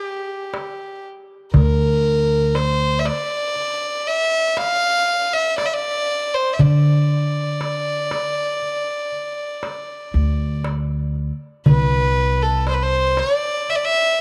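A straight 10/8 pulse counted in eighths at 119 BPM drives this melancholic, longing Turkish makam ensemble piece in D makam ussak, cut from a longer performance. A single bowed violin carries the melody between G4 and F5, sitting up front with a rich, pure tone, a soft attack and an airy, floating sul tasto sound. The darbuka joins at 0.5 seconds, its small metal shell giving crisp, high strokes played with soft hands in a live-room setting. At 1.5 seconds the upright bass enters up front, plucking woody pizzicato lines from C2 to D3 on steel strings. The trio shares light reverb and a small room ambience, and the music moves into a new section at 11.7 seconds before the fragment ends.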